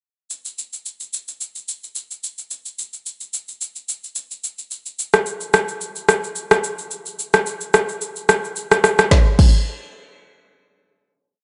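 An up-front electronic afro-pop drum kit opens this short, soulful and relaxed amapiano piece at 109 BPM in a swung 4/4, carrying a breakdown of steady shaker, soft deep kick, syncopated rim clicks, woody snare and crash cymbal with a tape-warm, small-room character, light reverb and softened highs until a final hit at 9.1 seconds, the drums stopping at 9.6 seconds.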